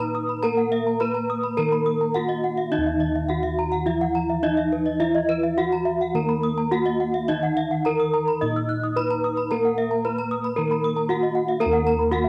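This is a hypnotic, brilliant Balinese gamelan fragment in Eb pelog at 105-118 BPM, cut from a longer piece. A bright, up-front bronze metallophone played with a horn mallet and touched by cassette tape carries the melody. A mellow, padded metallophone with a vintage, band-limited tone accompanies lower down, while two more metallophones ripple through high arpeggios, one struck with a wooden mallet. Airy bossed gongs anchor the bass, paired tuning makes the keys shimmer, and a wet spring reverb with small room ambience colours the home cassette recording.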